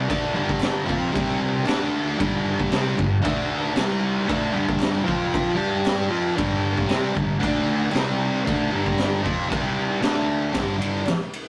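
A straight 4/4 groove drives this rowdy, raw garage rock excerpt. A thick, bright, double-tracked fuzz guitar sits up front with a picked riff built on G5, C5, D5 and F5 power chords. Beneath it, a gritty, saturated acoustic kit with a boomy kick, high-tuned snare, crash and ride plays from 0.1 seconds, while very quiet, hollow group handclaps join at 0.6 seconds, all in a rough rehearsal-room sound with tube saturation and moderate reverb.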